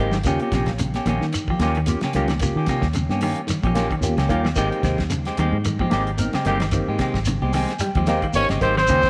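A drum fill from a damped 70s kit opens this funky, hypnotic afrobeat groove at 111 BPM, where a barky tine electric piano with phaser, dark semi-hollow guitar stabs, a round fingered bass, clean picked guitar arpeggios in the background, bright high-tuned congas and a grainy shekere play over Eb7 and Abmaj7 in a small room, with the piano taking a fill from 7.3 s before a clear, up-front trumpet and a raspy, gritty tenor saxophone enter at 8.4 s.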